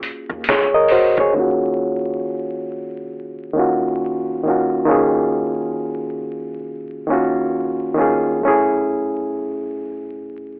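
Hazy and nostalgic, this lo-fi hip hop fragment, cut from a longer piece, sits on a lazy swung groove in four. A barky, reedy electric piano carries the accompaniment up front, its bright tone lightly overdriven and muffled by a low-pass filter, as if heard through its own built-in speakers. For the opening 1.3 seconds, a gritty, pitched-down sampler-style drum kit with a thumpy kick, medium-tuned snare and hi-hat plays alongside it with a compressed, cassette-tinged sound, while a woody pizzicato upright bass on gut strings enters at 0.3 seconds, low in the mix. From 1.3 seconds the electric piano carries on alone through a long filter sweep, moving from Ebm7 to Gbm7 at 8.4 seconds. The whole thing is bathed in a damp studio ambience and colored by home cassette recording, vinyl crackle and a thin telephone-like tone.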